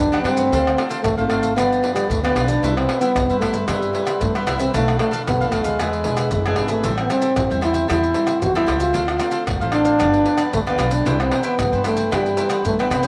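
A straight, festive samba-and-choro groove in 4/4 is driven by maracas, pandeiro, tamborim and a deep surdo struck with hard hands, their vintage, band-limited sound entering at 0.1 s over a woody pizzicato upright bass that sounds from the very start. Up front, a mellow trombone carries the sunny solo melody in jazz style, with light vibrato and scooped notes, while a crisp, picked cavaquinho and a very quiet, fingerpicked classical nylon-string guitar fill in the harmony from Gmaj7 through Bm7b5, E7 and Am7 to a closing Cmaj9. The whole excerpt sits in a moderate echo chamber reverb with small room ambience.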